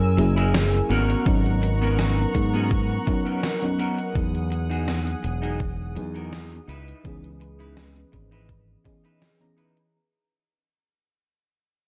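A bright, up-front fingered electric bass anchors this nostalgic, melancholic vaporwave clip, cut from a longer piece and fading out across its whole length, over a soft, round FM electric piano drenched in lush chorus and tape echo, with a dark, bowed string section holding sustained chords under a filter sweep. A clean, picked electric guitar riff enters at 0.2 seconds with chorus, tape echo and 12-bit sampler grit, joined by a gated 80s drum machine playing hi-hat and a gated-reverb snare. A thumpy, overdriven electronic kick arrives at 1.3 seconds, and the whole recording has the gritty, hardware-and-cassette sound of a dry, lightly reverberant room as the chords move from F#9 through G#m11 and Emaj9 to C#m9.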